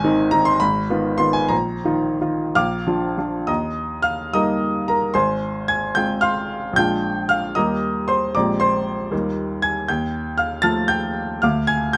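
Flowing in 6/8 with free rubato, the pulse moves between 55 and 81 BPM counted in dotted quarters, giving this romantic character piece for solo piano a breathing, elastic feel. Set in Eb major and tuned to A4 = 442 Hz, the clear, natural-sounding baby grand sits up front and spans a broad register from Ab1 up to A6, carrying a passionate, warm mood across this 12-second fragment of a longer work. The opening passage leans on suspense, drifting from Ab through a half-diminished color to a Bbsus4 that settles onto Bb. At 3.5 seconds a new section arrives on Eb, then travels through Fm/Ab and Bb7 back to Eb, touching a lush Bb13 before returning home once more. An F7 over an Eb bass and a rootless Bb7/D close the fragment on an unresolved note. Close, detailed miking and a touch of light reverb keep the instrument intimate and present.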